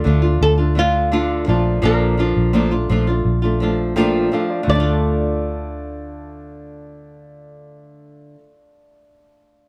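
Reflective and tender, this short acoustic pop excerpt in a straight 4/4 pairs two fingerpicked flamenco guitars, one carrying the melody up front and the other, darker and woody with old strings, supplying the accompaniment, while a polished baby grand piano sits present in the background. A vintage electric bass, foam-muted, round and punchy, sits up front beneath them as the harmony moves from D minor to Bbmaj7 and back to D minor at 4.7 seconds. Light reverb surrounds the parts, and the piano rings on alone until 9.7 seconds after the others stop.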